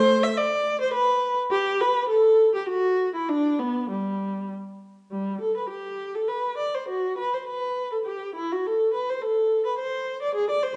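The recording has a dark, warm character, with a moderate recital-hall reverb that lingers for about 1.5 seconds and lends the single instrument a distant glow even as it sits up front. This is a classical, baroque-style suite movement for unaccompanied viola, heard as a short fragment cut from a longer piece. One bowed viola plays alone from 0.0 to 10.8 seconds, moving between G3 and E5 in triple metre with a flexible, rubato feel. Its tone is smooth and even, coloured by vibrato. The passage falls into two statements of the same opening material, the second arriving at 5.1 seconds, and the mood is flowing and radiant.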